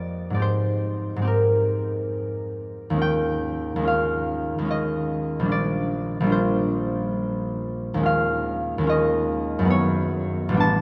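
A solo concert harp opens this short classical passage, its fingerpicked, ringing strings sitting up front in a mysterious, wistful mood at a slow 71 BPM in 3/4 with uneven, rubato timing. Spanning a deep A1 up to A5, the harp moves through lush extended chords, from Abmaj9 at 0.4 seconds through Eb9sus4 and Bb69 to a closing Gb11 at 9.7 seconds. A cavernous cathedral reverb lets each note hang in the air, and the passage is cut from a longer piece.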